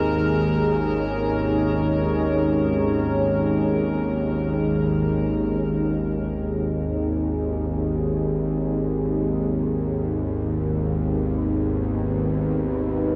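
Free-time dark ambient drone in G# minor, ominous and desolate, in which an up-front, tense, string-like bowed-like drone with vibrato sits low beneath a deep, moody pad holding sustained chords through chorus, while an eerie, metallic inharmonic drone hovers until 5.3 s, when the harmony shifts from G#5 to G#m, all of it bathed in a huge, wet reverb and the warbling pitch drift of worn cassette tape in this section cut from a longer piece.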